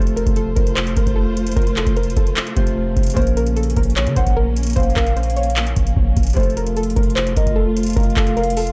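A dark, dry, warm-toned trap excerpt at 150 BPM in half-time, Bb harmonic minor, where a booming, tape-warm analog drum machine with deep kick, metallic hats and handclaps sits up front over a boomy sine 808-style bass, while a soft round pluck carries the melody through chorus and digital delay, a fingerpicked Celtic harp rings beneath, a distant, lush string section holds woody bowed chords, and from 4.2 seconds a hollow clarinet-like synth lead adds a mellow second line with vibrato, all moving from F to Bbm and back for a melancholic mood.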